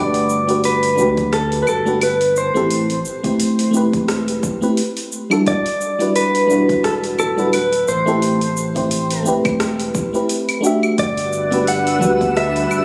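Wistful and relaxed, this sunset chillout fragment, cut from a longer piece, drifts on a gentle swung groove over a Gmaj7, Am7 and Em7 progression. Up front, a clean, compressed electric pedal steel guitar carries the melody with fingerpicks, slide and volume swells, roughened by vintage 12-bit sampler grit and digital delay. Beside it, a soft, round FM electric piano plays dark, decaying accompaniment through chorus, phaser and delay, while a deep sine sub bass sits round and mellow underneath. A deep house kit of cabasa, claves, metallic hi-hat and rim click enters at 0.1 seconds, joined at 1.2 seconds by a layered, overdriven electronic kick. Near the close, around 11.3 seconds, a silky vintage string machine adds slow-attack chords with ensemble chorus, as a sparkling granular texture with octave-up shimmer and bright congas with hard hands glint in the background. The mix sits in a lush hall reverb, captured on a phone in the room with a club reverb.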